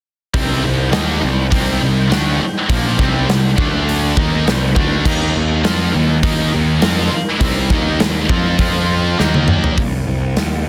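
A dense, heavily limited mix with small-room reverb frames this driving, aggressive hard rock passage in C minor at 102 BPM, cut from a longer piece. A punchy, up-front acoustic drum kit with bright cymbals and a growly, overdriven fuzz bass anchor a riff played by two double-tracked high-gain electric guitars, one set back in the background. A very quiet, reedy tonewheel organ with key click and slow rotary speaker holds sustained chords. After a drum fill from 9.2 seconds, the guitars and organ stop at 9.8 seconds, while the bass and drums carry on for a moment longer.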